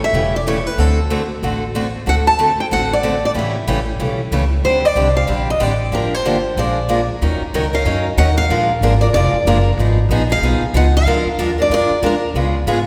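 Acoustic string swing in the jazz manouche style, this is a brisk, bittersweet passage cut from a longer piece, moving at 187 BPM in 4/4 with a light swing on the eighth notes. A bright steel-string acoustic guitar with a concert-instrument ring carries the melody up front from the very start, sitting in the range of A4 to A5 until it drops out at 12.3 s. Beneath it, a second steel-string guitar with fresh strings and a boxy parlour character picks out accompaniment up front, while a mellow archtop guitar fills out the harmony from further back. An upright bass played pizzicato on gut strings gives a woody, thumpy pulse close to the listener. The opening section circles dominant chords such as A7 and D7 before the music settles into Eb minor at 7.2 s, where Ebm7, Fm7b5 and Bb7 deepen the melancholy tint. A wet reverb from a church or concert hall space lends the ensemble a spacious bloom.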